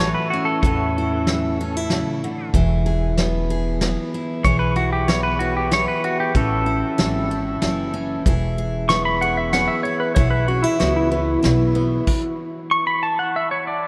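Honky-tonk and classic country in a nostalgic, down-home 3/4 at 94 BPM: a clean, compressed pedal steel guitar, up front and played with fingerpicks, volume swells and slide, takes a solo over a bright, full-bodied picked acoustic guitar with audible finger squeak, a woody, dark pizzicato upright bass and a distant, roomy brush kit with a fat snare and punchy kick that enters at 0.6 seconds, all set in a vast, echoing cathedral-like space, before a stop at 12.1 seconds in this fragment of a longer piece.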